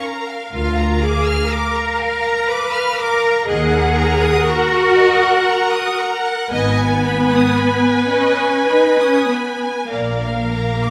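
Violins carry a yearning melody from the opening moment, joined by a second violin line ranging higher, violas and an up-front cello section, with woody double basses entering at 0.5 seconds beneath them. This elegiac, slow romantic movement for string orchestra moves in a rubato triple metre, the bowed sections lush with vibrato and the violas sounding focused and close. A scoring-stage reverb lends the ensemble a spacious wet glow across this fragment of a longer piece.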